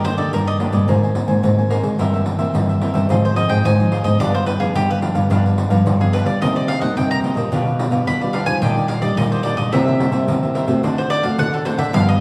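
From the first beat, a bright bowl-back mandolin with picked double strings carries the melody over crisp cavaquinho, an up-front fingerpicked nylon-string guitar, a full-bodied, deep nylon-string bass line sitting in the background and a jingly, soft-handed pandeiro. Together they form a bittersweet, nostalgic samba and choro piece in C minor at 109 BPM, cut from a longer performance, whose chords move from Ebmaj7/G to a closing D7 at 10.8 seconds, all bathed in a wet recital-hall reverb with lossy compression artefacts.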